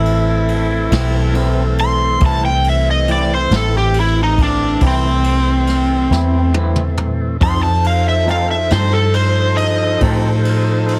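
A slow blues in 12/8 at 46 beats per minute on the dotted quarter, with a straight feel, sits in A minor in a soulful, brooding mood. An up-front, overdriven slide guitar, played with fingerpicks, carries the melody as a solo from the start, ranging from C4 to C6 and stopping at 10.0 seconds. Beneath it, a foam-muted fingered electric bass gives a round, dark low end, and a reedy tonewheel organ holds sustained chords through a slow rotary speaker with vibrato. A jazz drum kit played with brushes adds a boomy kick, dark cymbals and a medium-tuned snare, with a fill from 6.1 to 7.4 seconds as the harmony moves from Am to F7. From 0.9 seconds, a twangy, slightly broken-up electric guitar through a small old amp adds picked accompaniment with harmonic tremolo. The whole is heavily compressed like a radio broadcast with light reverb, and this short passage is cut from a longer piece.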